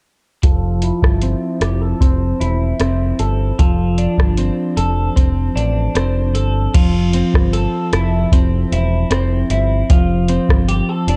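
The recording sounds dark and dry, with warm production that keeps the guitar, bass and drum machine up front. This is a sunny, laid-back slice of indie and bedroom pop in F major, moving at an unhurried 76 BPM in a straight 4/4, cut from a longer piece. A bright, twangy twelve-string electric guitar carries the accompaniment, its clean, picked, compressed tone coloured by subtle chorus, vibrato and a low-pass filter, with a filter sweep shaping it through the first section until 6.8 seconds. Beneath it, a round, deep dub bass is picked with a direct, amped sound, while a soft vintage analog rhythm box supplies a deep kick, metallic hi-hats, rim clicks and crash cymbal. The harmony rocks gently between Fmaj7 and Dm7/F, and the second pass of that change, from 6.8 seconds, closes on a rootless Dm7/F voicing.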